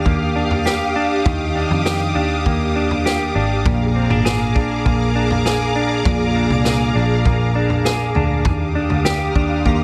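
This dreamy, ethereal dream pop excerpt in Eb major opens with a semi-hollow electric guitar playing clean, fingered arpeggios, up front with a subtle chorus and delay. Beneath it, mellow, full-bodied string-machine violas hold sustained sawtooth chords with a slow attack and ensemble chorus. A dark, round, foam-muted picked electric bass anchors the low end, and a very quiet twinkling granular texture adds a bright, octave-up shimmer until 1.4 s, returning at 5.9 s. A vintage acoustic drum kit joins almost at once with a punchy kick, a medium-tuned snare and toms in a natural studio-room sound. At a steady 100 BPM in 4/4 with a straight feel, the harmony moves from Ebmaj9 to Bb7 and back to Ebmaj9. A huge ambient reverb with a 4.7-second tail bathes the mix in a hazy, floating atmosphere.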